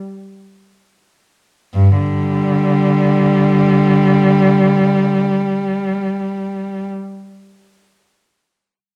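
The recording sits in a moderate recital-hall reverb, with the lone cello placed close and up front for an intimate, private feel. This is a classical piece for unaccompanied cello, meditative and lonely in mood, moving freely and expressively in free time. The opening seconds slow down before the cello enters at 1.7 s, staying between G2 and G3 in its low register. The tone is dark, bowed sul tasto with an airy quality, a soft attack, a smooth top and vibrato. The single player stops at 6.9 s in this brief fragment cut from a longer work.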